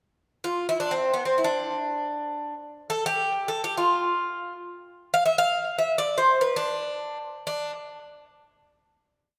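A bright, metallic Greek bouzouki carries a soulful, melancholic solo in this short, complete piece in the Turkish makam tradition, its picked double strings, some doubled at the octave, spinning an ornamented modal melody up front in free time. Tape echo trails the bouzouki, and a wet concert-hall reverb surrounds the playing, which runs from 0.4 to 7.7 seconds before a final note rings out to the close at 9.3 seconds.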